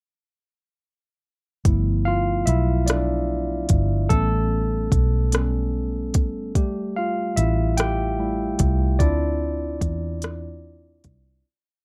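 A barky, bright tine electric piano opens this sultry, yearning slow six-eight R&B piece at 1.6 s with rootless chords through a combo amp and soon takes a solo over G13, A9, Fmaj9 and Dm9, joined by a round, foam-muted fingered bass with slides and an overdriven, electronic drum kit with soft kick, crisp hats and rim clicks, all close and dark in a dry mix until a fade-out from 9.0 s.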